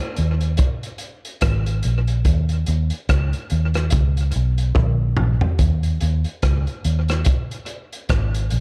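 Bass and drums enter together at 0.2 seconds in this laid-back, hypnotic roots reggae excerpt, moving at 72 BPM in 4/4 with a swung sixteenth-note feel and tuned slightly sharp to A4 = 445 Hz. The vintage muted fingered electric bass sits up front with a round, foam-muted, amped tone in a low register, while the crunchy breakbeat kit of hi-hat, tight kick, rim click and toms sounds gritty and saturated, its top rolled off, with a drum fill at 4.8 seconds. The production is dark and dry, with little reverb.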